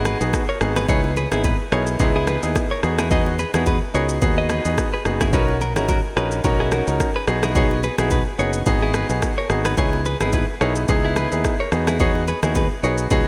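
Afrobeats at 108 BPM with a lightly swung sixteenth feel, this romantic, breezy passage is cut from a longer piece and drifts through Emaj7, C#m7 and Bmaj7 chords. A clear, intimate grand piano with audible action noise and long sustain sits up front alongside an electronic afro-pop kit of deep kick, rim click and shaker, roughened by vintage 12-bit sampler grit and gated reverb. A growly, punchy fingered bass anchors the low end, a bright, compressed clean guitar riff echoes through delay, and very quiet bongos and congas with hard hands add a small-room accent, all set in a lush hall with glossy 1980s-style digital sheen and a faint mains hum.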